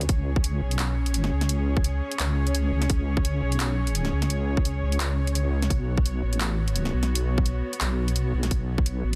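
A dense, heavily limited modern master with digital ambience frames this dark, spacious half-time drum and bass fragment, cut from a longer piece with a light swing. A deep, detuned sawtooth wobble bass with chorus sits up front beneath an intimate studio cello section bowing sustained sul tasto chords with light vibrato and sidechain pumping, the harmony moving to Bsus2 at 5.7 s. An overdriven drum kit adds a cracking snare, bright hats and handclaps, while a tight, overdriven electronic kick punches up front from 0.1 s to 8.8 s.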